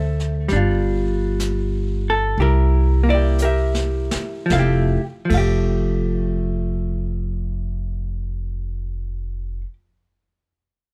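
Swung eighths in 4/4 carry this tender, late-night jazz ballad as it slows through its opening 4.5 seconds, with a dark, clean, compressed hollow-body electric guitar up front, picked as accompaniment, beside a woody, growly pizzicato upright bass, while a distant, roomy brush kit with dark cymbals and a boomy kick plays a fill before falling silent at 5.5 seconds, leaving guitar and bass to rest on Fadd9 in a dry mix.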